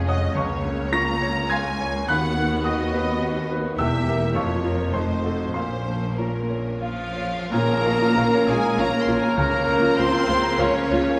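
Bathed in the wet reverb of a recital hall, this excerpt from a romantic movement for piano and orchestra sounds lyrical and passionate, moving in a rubato 3/4 between 82 and 109 BPM in Bb minor. A clear, polished grand piano sits up front carrying the melody with long sustain, joined on the melody by a rich, distant violin section, while a second violin section adds a smooth line in the background. Lush violas, focused cellos and close, even double basses fill out the accompaniment and bass beneath, and a very quiet cymbal swell and tam-tam shimmer between 3.8 and 9.9 seconds. A clear solo oboe and a pure, very quiet flute section join with second lines at 6.8 seconds. At 7.5 seconds the music turns to a new section with a full-band accent, as a roomy clarinet, soft horns, vintage-toned trombones and tight, mellow trumpet stabs enter over harmony that settles back onto Bb minor.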